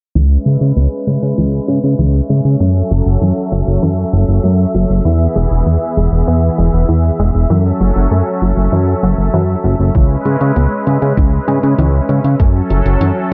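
A fat, thick analog bass sits up front in this moody, nocturnal synthwave excerpt at 98 BPM in F# minor, its detuned, wave-folded tone sweeping through a filter and pumping against the sidechain as chords move from C#m7 to F#m7 and E. Above it, a brassy, warbling vintage pad holds sustained chords with chorus, vibrato and its own filter sweep and pumping, while a round, very quiet pluck with a sub octave traces arpeggios underneath. A thumpy, sampler-style kick arrives up front at 9.9 s with a faint layered hi-hat in the background, all set in a dark, warm production with light digital reverb.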